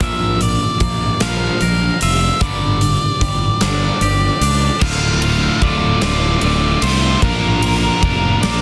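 A growly, overdriven fingered bass sits up front beside a huge, punchy arena drum kit with bright cymbals in this brooding, cathartic quiet-loud alternative rock excerpt in 6/8, where a dark octave-fuzz lead guitar carries the melody over a crunchy riff guitar, a twangy clean guitar picks arpeggios until 4.8 s, and a scooped high-gain guitar joins the riff from there to the end, wrapped in studio reverb and a dense, heavily limited modern master.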